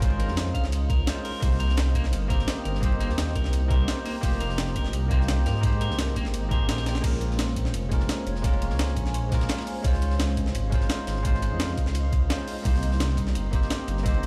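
Dreamy and soulful, this liquid drum and bass cut from a longer piece moves in a straight 4/4 over lush extended chords such as Dbmaj9, Cm7 and F9sus4. A deep, rumbling detuned saw bass sits up front, carrying the low end beneath a thumpy, pitched-up electronic kick and a gritty, compressed sampler-style breakbeat kit of crash, hi-hat and snare. Behind them, a second, crunchy breakbeat kit adds saturated hi-hat, ride and snare with a rolled-off top, sitting in the background. A bell-like, barky tine electric piano plays the accompaniment through dub echo, while a shimmering, ethereal pad with chorus and phaser holds sustained chords far back in the mix. A bright, twangy electric guitar at the edge of break-up picks arpeggios with dub echo from 0.2 to 7.0 seconds, and a drum fill at 6.9 seconds leads into the second pass of the section, all set in the ambience of a big sound system playing in a bare room.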